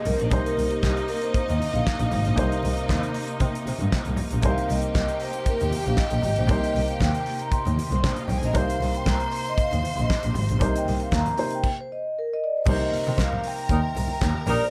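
A straight 4/4 disco groove at 117 BPM in C minor drives this glamorous excerpt, where a dry, damped 70s drum kit with a fat snare, tight kick, dark cymbals and handclaps sits up front beside a bowed double bass with an airy, soft attack and very quiet low-tuned congas, while a vibraphone with soft mallets carries a ringing, metallic solo over a Cm7 chord through the first 12.7 seconds, broken by a stop at 11.6 seconds, backed by an intimate concert grand piano with audible action noise, a clear chamber string line with slapback echo and lush distant studio strings in the background, before punchy, mellow horn stabs arrive at 13.7 seconds.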